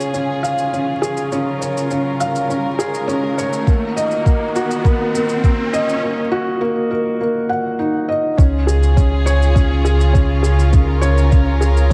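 Hopeful and tender, this piano-and-strings electronica cut moves at 102 BPM in Db major, with a felt-muted upright piano playing a mellow, boxy riff up front, its action noise audible and a digital delay trailing behind it. Beneath it, a dark chamber string section holds bowed sul tasto chords with light vibrato, while a round analog bass sits deep and nasal; both strings and bass carry sidechain pumping. A brushed shaker adds a smooth, rolled-off texture, an electronic riser runs through the build-up until 6.0 seconds, and a soft electronic kick enters at 3.7 seconds before the drop lands at 8.4 seconds, all in light small-room ambience.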